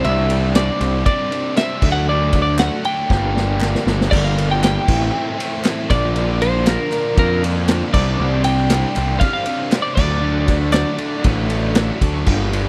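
Indie rock, restless and bittersweet, in which a bright, compressed twelve-string electric guitar carries a warbly melody over a biting, double-tracked overdriven riff, an up-front fuzz bass, a punchy vintage drum kit with dark cymbals in a pumping small room, crisp handclaps in the background from 0.6 s and a very quiet, phaser-tinged organ-string pad, while a drum fill at 3.1 s leads into a clean electric guitar solo from 4.1 s, all set in a dry mix.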